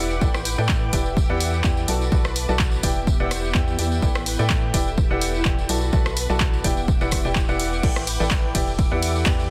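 A dry, close sound with little reverb and a dense, heavily limited modern master gives this short piano house cut an energetic yet bittersweet character, with a light swing on the sixteenths. A clear, woody upright piano, slightly detuned and a little worn, carries the riff through a delay, cycling through A9sus4, Em7 and Bm7 chords while a hollow, organ-like FM bass with a fast, decaying attack anchors the low end. A punchy electronic kick lands at 0.2 seconds, and a tape-warm analog drum machine, re-recorded in a small room, adds crash and ride cymbals, hi-hat, handclaps and rim clicks from 0.3 seconds. A band-limited vintage tambourine, blended with maracas and a group handclap, rustles alongside. In the background, a silky, bright sawtooth string pad with chorus and vibrato holds sustained chords, and an ethereal, airy pad with a noise layer, built-in reverb and phaser spreads a slow-attack haze. 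Sidechain pumping on the piano, bass and both pads makes them breathe with the beat.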